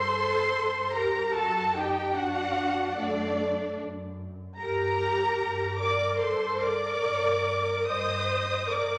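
Melancholic and elegiac, this slow romantic movement for string orchestra moves at 74 BPM in G minor with a free, rubato feel, cut from a longer piece. A soft-attacked, lush violin section carries the melody somewhat in the background, alongside a dark, woody second violin line, while close, expressive violas add portamento in the accompaniment and a rich, focused cello section joins a woody double bass section underneath, all bowed with vibrato. A wet recital-hall reverb surrounds the strings as the harmony turns from Gm through D/F# and back before settling on Cm/G at 7.9 seconds.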